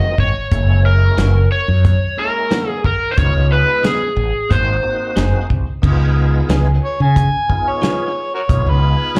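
An up-front, overdriven slide guitar leads this gritty, laid-back straight-eighth soul blues at 90 BPM in Db mixolydian, its bright fingerpicked slide melody carrying slapback echo and digital delay until 5.5 seconds. Beneath it, a tonewheel organ holds a full, lightly overdriven bed through a slow rotary speaker with chorus vibrato, while a direct-recorded clean electric guitar adds compressed, picked stabs coated in lush chorus. A round, punchy fretless bass sits prominently at the bottom, and a soul drum kit with dark cymbals, a medium-tuned snare and a tight kick keeps a smooth, small-room groove over changes that move among Ab7, Gb7 and Db7. At 6.8 seconds an amplified, overdriven harmonica takes a jazz-style solo, full of tongue slaps, scooped notes and light vibrato. The whole excerpt sounds like a live club set heard through the venue's PA with light reverb, cut from a longer performance.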